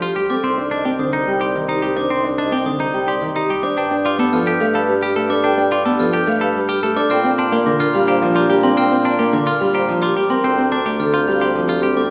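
An up-front grand piano, intimate and a little boxy with audible action noise, carries the accompaniment through this 12.1-second cut from a longer minimalist classical piece in C dorian, moving at 108 BPM in a straight 3/4. Above it, a ringing vibraphone played with medium mallets takes the melody, its fast motor vibrato adding a shimmering pulse. A bell-like glockenspiel struck with soft plastic mallets and a clean, compressed semi-hollow electric guitar both play arpeggios, while a very quiet, airy alto flute with gentle vibrato and a soft attack sits distant as a second line. A dark bassoon with light vibrato anchors the bass from a roomy distance. The harmony moves through Cm, Gadd9, Bbadd9 and Dm7, and a wet scoring-stage reverb with a 1.7-second tail and a rounded top end gives the urgent, hypnotic texture a spacious glow.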